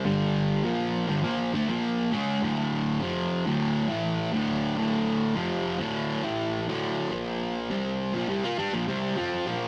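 Metal at 102 BPM in a straight 4/4 and D minor, this brooding, ominous fragment of a longer piece features a lone fuzz guitar, bright, picked and double-tracked, with compressed distortion placed up front and spanning D2 to F4. The harmony moves from G5 to Dm at 2.4 seconds and reaches Bb5 at 7.1 seconds, with the instrument tuned slightly sharp to A4 = 443 Hz. A moderate stone-room reverb and tube saturation give the rough rehearsal-room recording a gritty, menacing edge.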